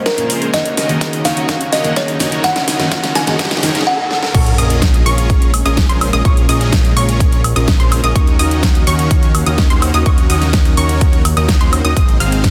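Festival progressive house in Bb minor at 126 BPM, this emotional, anthemic passage is cut from a longer piece and moves from a build-up into a drop at 4.3 seconds. The opening pairs a woody, hollow-sounding kalimba melody with delay and a picked steel-string acoustic guitar showing fresh strings and finger squeak, both ending before the drop, while a very quiet riser and sub drop run from 0.4 to 6.2 seconds beneath a drum fill. A lush, chorused unison pad sits in the background with a slow attack, and a fat, wave-folded analog bass with filter sweep holds the low end, both pumping against the sidechain. The punchy, up-front electronic kick leads the drums, joined by a big-room kit with a huge snare, metallic hats, crash and woodblock, all re-recorded in a small room. A dense, compressed supersaw riff with a sub octave, noise layer and vibrato drives the track, and from the drop a short-decay unison pluck adds high arpeggios with delay over chords of Bbm7, Ebm7 and a closing Ab. 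The master is heavily limited and dense, with light reverb.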